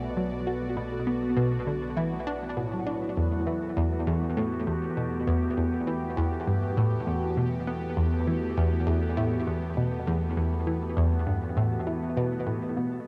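Expansive and hypnotic, this excerpt of ambient, sequencer-driven space music moves at 100 BPM in a straight 4/4, shifting from Bm7 to Emadd9 at 3.2 seconds. An up-front analog pluck carries the riff with a round, nasal sawtooth bite, run through chorus, phaser, tape echo and cassette tape, while a swirling, detuned phased analog pad holds sustained chords with slow-attack, wave-folded brightness. Beneath them a very quiet concert harp rings out mellow, thumb-plucked arpeggios and an evolving pulse-width analog drone hums the bass in the background, all set in a moderate spring reverb with the character of a home cassette recording.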